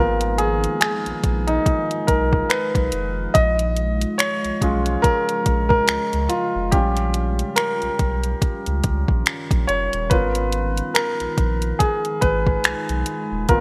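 Sensual and longing, this slow contemporary R&B excerpt sits in a gentle swung groove taken from a longer piece. An intimate grand piano leads throughout, close and up front, its long sustain carrying a soft trace of action noise as it moves from G#m69 to D#9/A# and back. Beneath it, a round sine sub bass holds the low end with a fast attack and sustained notes. An electronic, produced drum kit brings finger snaps, tape-warm hi-hats and a soft kick, set forward in the mix. Far back, a moody, detuned sawtooth pad with a sub octave, chorus and its own reverb breathes in slowly and lingers, while light digital ambience wraps the whole track.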